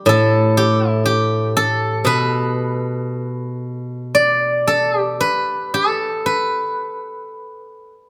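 Elegant and flowing, this short passage of Chinese traditional music, cut from a longer piece, features a single steel-string zither played solo. The tempo sits around 58 BPM in 2/4, but the playing moves with a free, rubato feel. Plucked with fingerpicks, the acoustic zither rings out with a silvery, up-front tone, ranging from A2 up to D5 across the full 8.1 seconds. Close, detailed microphones capture the instrument intimately, while a moderate recital hall reverb of 1.6 seconds lends it a graceful sense of space.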